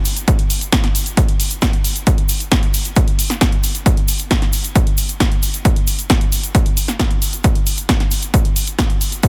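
A layered, punchy electronic kick sits up front with a tape-warm character, anchoring this soaring, driving trance excerpt in straight 4/4. An analog drum machine supplies hi-hat and a punchy snare, its hats and cymbals pumping under sidechain, while a grainy, bright egg shaker stays close and dry in the background. The mix carries a digital ambience and a dense, heavily limited modern master, with the kick arriving at 0.3 seconds just after the drum machine and shaker.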